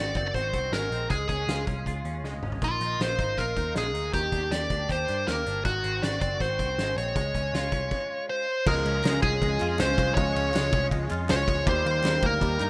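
Nostalgic and youthful, this jangly indie pop excerpt in a rough home-demo mix sets an up-front, overdriven lead guitar with a nasal parked-wah tone carrying the melody over twangy, compressed clean-guitar arpeggios, a round, foam-muted picked bass and a loose, roomy drum kit with a fat snare and punchy kick that plays a fill at 2.2 seconds, before a lush bowed violin section enters in the background at 8.3 seconds, a dark fingered electric guitar and a detuned sawtooth analog pad join from 8.7 seconds, and very quiet crisp handclaps follow at 9.0 seconds.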